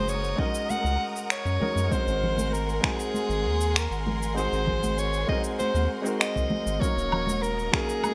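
Warm and wistful, this sunset chillout excerpt sets a bright, smooth-topped soprano saxophone melody with vibrato and digital delay up front over delayed grand piano accompaniment, lush bowed symphonic strings, a deep, round analog bass, punchy layered electronic kick, produced shaker, finger snaps and woodblock with gated reverb, and close congas in the background, all in a glossy 1980s-style digital hall.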